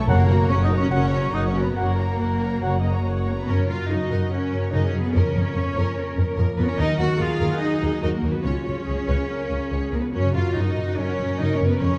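Triumphant and heroic, this cinematic adventure-score fragment moves at a brisk, straight four-beat pulse and opens with a burst of brass, round, softly struck timpani, and a mellow, gently attacked trumpet stab over distant, roomy French horn chords, all gone within the first 3 seconds. A pure, hollow silver flute, close-miked and tongued with vibrato, sings a high second line through that opening before falling away. Lush bowed strings carry the piece throughout: a warm violin section holds the expressive melody in the background while a second violin section and the violas add smooth, even, distant support. Intense cellos and a focused, up-front double bass section anchor the low end, and a bright, ringing harp spins fingerpicked arpeggios across a broad range. After the brass drops out, the music settles into a steady string-and-harp passage, its chords moving from the home chord through minor colours before returning home near 10.1 seconds, all framed by a dark production and a moderate scoring-stage reverb.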